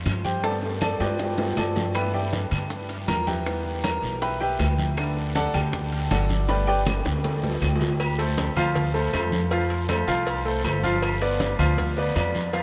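Drenched in a moderate, huge ambient reverb, this sunny, joyful salsa fragment sounds as if it were played in a vast, echoing space. Up front, a bright upright piano with a brilliant, polished, present tone carries a solo through the opening 8.0 seconds, moving over Gadd9, G6, Em and D before shifting to Dm7, Fadd9 and G7. Beside it sits a dark, thumpy pizzicato upright bass on gut strings, also up front and woody in character. Behind them, a full Latin percussion section fills the background: thick-skinned congas struck with hard hands, ringing metal-shell timbales with agogo bells, distant claves, a raspy guiro and grainy, mellow maracas. Round, low-tuned bongos and cowbell sit very quietly in the mix, and a drum fill arrives at 6.5 seconds, just before the change into the closing passage.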